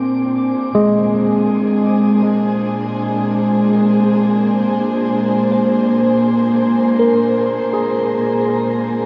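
An overdriven tine electric piano, bright and barky with a gritty edge through a combo amp, spins arpeggios up front, colored by phaser and tape echo. Alongside it, a dark studio string section, also up front, fades in across the whole 9.1 seconds, holding lush, woody bowed chords with vibrato and a smooth top over a Bb7 harmony. This free-time ambient excerpt feels warm and peaceful, bathed in a long shimmer reverb within a dark production.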